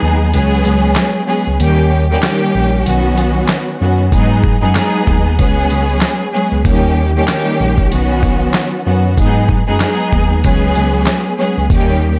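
Moody and tough, this swung boom-bap hip-hop fragment, cut from a longer piece, sets a lush, bowed studio string section up front, singing with expressive vibrato over a worn, slightly out-of-tune tine electric piano that carries the bass line in a mellow, clean register. A gritty, compressed sampler-style soul kit enters at 0.3 seconds with a thumpy kick, medium-tuned snare, hi-hat and handclaps, while the harmony cycles through C#7sus4, D#7, Badd9 and G#m7. The opening stretch up to 4.1 seconds works as a break, and the whole sits in a digital ambience.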